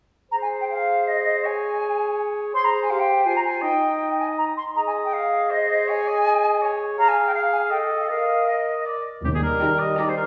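A lively, spirited classical-period orchestral movement in triple time with a rubato feel, cut from a longer piece, opens with an airy flute, a warm oboe and a bright clarinet carrying up-front woodwind lines in a reverberant hall; at 9.2 s mellow French horns sustain chords over lush cellos and bowed double basses while round, soft-mallet timpani sound, and at 9.6 s floating sul tasto violins, split into a very quiet melody and a background second line, enter alongside dark violas playing the accompaniment.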